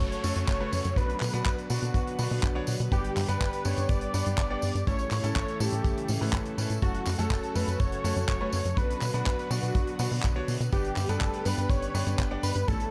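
This nostalgic, danceable italo disco excerpt at 123 BPM in B minor opens with a dark sawtooth sequencer bass with a plucky filter, brilliant grand piano stabs, a lush chorused unison pad in the background, a very quiet electronic downlifter ending at 2.9 seconds, and a thick, nasal, warbling unison lead with vibrato and tape echo carrying the melody over F#m, Bm, G and A chords. A small-room funk kit of handclaps, hi-hat and tambourine enters at 0.1 seconds, followed by a dry, tight acoustic kick at 0.5 seconds, all in a nearly reverb-free mix.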